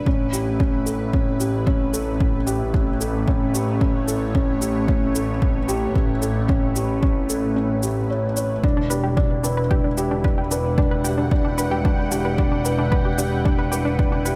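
A punchy, overdriven electronic kick and an equally overdriven shaker drive a straight 4/4 pulse at 112 BPM, with the kick dropping out between 7.6 and 8.6 seconds in this hypnotic, moving piece of piano and strings electronica, cut from a longer work, in a tuning of A4 = 438 Hz. Up front, a felt-muted upright piano repeats a soft, boxy riff with audible action noise and digital delay, while a bowed chamber double bass section adds an earthy, nasal low line with light vibrato and sidechain pumping. A lush, detuned sawtooth pad fades in under sustained chords moving from A7 to Em7, treated with chorus, phaser and pumping, and from 8.8 seconds a round analog pluck with a filter sweep plays arpeggios in the background.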